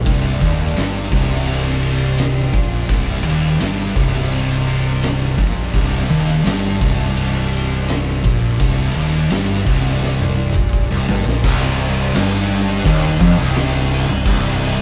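An oversized, low-tuned acoustic drum kit sits up front in this brooding, ominous stoner and doom metal excerpt, its punchy kick, fat snare and dark cymbals saturated and gritty in a bright stone room, with a drum fill from 10.0 to 11.4 seconds. Two thick, picked fuzz guitars grind out a low riff in C minor at 84 BPM in the background, one warm and one dark, over a fuzzy, overdriven fingered bass, while a bright, wave-folded drone with moving overtones, chorus and its own reverb holds sustained chords behind them. At 11.4 seconds a tight, bright, double-tracked distorted guitar joins with its own riff, all of it played live in one room under wet studio reverb.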